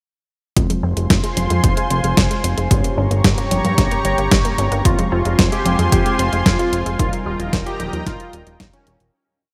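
A bold, thick unison lead with vibrato enters at 4.9 s over a punchy four-on-the-floor electronic kick, a fat sequenced sixteenth-note analog bass, a tape-warm 12-bit drum machine with conga, hi-hat and fat snare, nasal chorused plucked arpeggios, mellow phased synth brass stabs and a lush detuned pad in this danceable, melodramatic Italo disco piece in F minor at 112 BPM, its bright 1980s-style digital sound bathed in hall reverb with a filter sweep on analog polysynth throughout and a fade-out from 6.3 s to 9.1 s.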